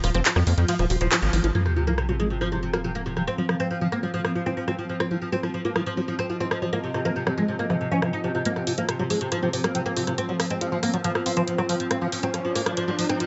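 A lightly reverberant mix, with its top end rolled off above 7.8 kHz, carries this alien, hypnotic psychedelic trance passage at 139 BPM in a straight 4/4, cut from a longer piece. Up front, a woody, double-strung oud plays the melody through phaser and digital delay. Beneath it, a squelchy liquid acid bass turns its riff through phaser and dub echo, while a swarming, granular drone of detuned sustained chords hovers in the background. A tight, punchy sawtooth sequencer bass drives only the opening drop, which carries a band accent at 1.1 seconds, before a sub-drop impact arrives at 1.5 seconds and a warbling, lo-fi pad with chorus settles in behind. The tape-warm garage kit of handclaps, hi-hat, ride and rim click sits up front, its hats, cymbals and snare softened by low-pass filtering. From 8.5 seconds a build-up takes hold as a filter sweep works on the acid bass; at 9.4 seconds a very quiet, juicy blip pluck adds a second line, and a riser carries the passage to its close.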